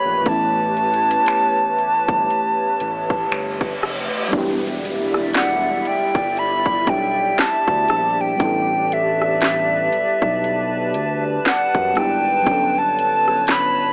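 A reedy, airy alto recorder with gentle vibrato and a cassette-tape echo carries the melody in this moody, late-night contemporary R&B excerpt, floating over a warbling vintage FM electric piano, a hollow, chorused pad, a smooth synth bass and an up-front trap kit of hard-clipped kick, sharp snare, metallic hats, rim clicks and finger snaps, while a reverse cymbal sweeps in at 3.0 seconds ahead of the shift to Em7 at 4.3 seconds, all heard through the lo-fi haze of a home cassette recording with a small speaker sound.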